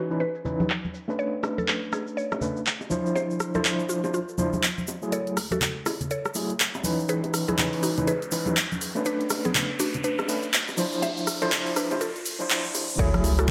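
Bathed in a moderate digital room reverb, this late-night deep house excerpt at 122 BPM in F# minor swings over a filter sweep, as a woody, round synth pluck carries the melody with chorus and tape echo and a barky, gritty overdriven tine electric piano plays up-front stabs with tremolo and sidechain pumping, joined by a grainy egg shaker, soft-handed bongos and congas, and a deep house drum kit with dark hi-hats, handclaps, rim clicks and crash cymbal, before a mellow sine sub bass arrives at 5.1 seconds to open a build-up over C#m9, Bm9 and Dm9, a riser and sub drop enter at 6.6 seconds, and a punchy, overdriven electronic kick lands at 13.0 seconds on the F#m9 impact.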